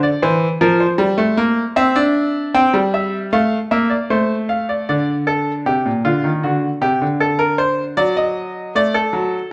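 Contemplative yet driving, this brief classical cut from a longer baroque-style two-part invention has a clear, natural baby grand piano playing solo and up front at 78 BPM in straight 4/4, its short-sustain tone ranging from Bb2 to G5 through harmonies from C/E and F/A before settling into G minor at 4.9 s and moving toward D/F#, all set in a moderate recital hall reverb and tuned slightly low at A4 = 437 Hz.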